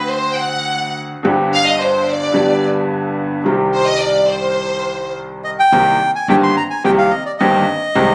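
A lush, bowed violin section with focused vibrato opens this tense, melancholic tango fragment, sounding bright and up front as it carries a second line from the opening until 5.1 seconds. Beneath it, a brilliant, natural grand piano plays accompaniment throughout, and a woody pizzicato upright bass on steel strings sits far back in the background. At 5.4 seconds a reedy, dark bandoneon enters with the melody, close-miked and full, with a touch of plate reverb. The piece moves at 108 BPM in 4/4 with a rubato feel in C minor, the harmony passing through D7, Gsus4 and G before settling on Cm and then Cm7. Captured on a phone in the room, the sound carries studio ambience, moderate reverb and compression, and it is cut from a longer piece.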